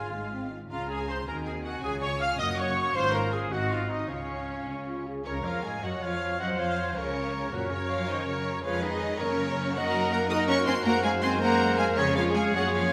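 Bathed in a wet concert-hall reverb, this graceful, cheerful classical-period movement in 6/8 sets an expressive vibrato violin melody over a rich, soft-edged second violin line and an airy silver flute, with smooth violas, mellow background horn chords, distant trumpet stabs, portamento-tinged cellos and close, even double basses carrying the harmony as it turns toward a minor-key colouring at 5.3 seconds before settling back at 9.8 seconds.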